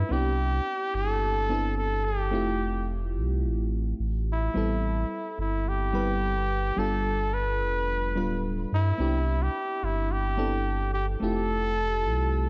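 A straight 4/4 pulse at 108 BPM carries this blissful sunset chillout excerpt in C major, tuned to A4 = 435 Hz and cut from a longer piece. A round, sine-toned sub bass sits up front across the full 12.5 seconds, its deep notes given a touch of tube saturation. A mellow FM electric piano with a soft noise layer and chorus supplies dark, decaying chords through Cmaj9, Fmaj7, Am7 and G7 before circling back to Cmaj9 and Fmaj7. Above them, a clear flugelhorn plays the solo melody in a pop style between E4 and B4, its vibrato trailed by digital delay. Light studio reverb and a dark, warm production wrap the whole in a gentle, glowing haze.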